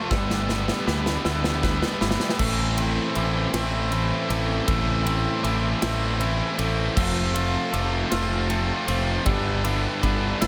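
Brooding and cinematic, this post-rock excerpt in 6/8 opens with a drum fill and build-up over the first 2.4 seconds, then settles into a heavy passage where a bright, up-front distorted guitar and a thick fuzz guitar both play riffs over a fuzzy, overdriven fingered bass and a big rock kit with a punchy kick, while a twangy clean guitar and a ringing, vintage glockenspiel struck with hard plastic mallets trace delay-soaked arpeggios in the background of a small, lightly reverberant room with a faint mains hum.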